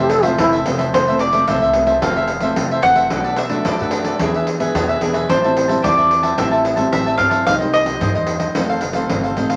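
A brief, up-front trombone phrase with vibrato and scooped notes opens this joyful, playful samba-choro excerpt over crisp picked cavaquinho, thumb-plucked nylon-string guitar and growly pizzicato upright bass, with a distant, jingly pandeiro joining at 0.1 s before a woody, double-strung mandolin takes the melody from 0.9 s in a moderate studio ambience.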